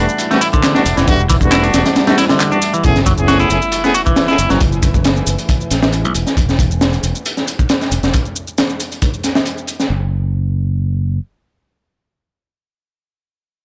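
A crunchy, saturated breakbeat kit sits up front, its punchy kick and high-tuned snare driving an energetic, swaggering breakbeat groove at 136 BPM with a light swing, layered with an electronic garage kit's handclaps, shaker and bright hats. A growly, bright fingered electric bass carries the low end through to 11.2 seconds, while a clean, hollow-body electric guitar riff and smooth brass ensemble stabs, both touched with tape echo, ride over a deep, detuned sawtooth pad with chorus, 12-bit grit and sidechain pumping in the background. A very quiet sub drop lands at 2.8 seconds as the chords move from Em11 to F#m11, and this gritty, dry cut from a longer piece ends on the bass alone after the drums stop at 9.9 seconds.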